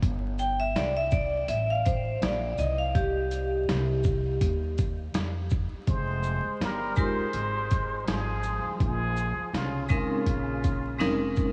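A jazz-hop excerpt at 82 BPM in F minor opens on a gritty, compressed sampler-style drum kit, with thumpy kick, medium-tuned snare, hi-hat and shaker pushed into overdrive, beside a woody, gut-strung upright bass plucked low and dark. At 0.4 seconds a vibraphone struck with hard mallets enters, metallic and ringing with a slow motor vibrato, and it takes the spotlight as a solo over the opening stretch while the harmony moves from Gmadd9 to Cmadd11. The 16th notes swing gently, giving the groove a nocturnal, smoky lean. At 5.9 seconds the chords turn to Fmadd9 and then Bbm11 as a plunger-muted trumpet takes the melody, breathy and wah-inflected with scooped notes and vibrato. Beneath it, a metal-muted trombone adds a buzzy, thin second line that passes through an analog delay. The whole mix sits in a huge ambient reverb with vinyl crackle, giving it a dreamy haze.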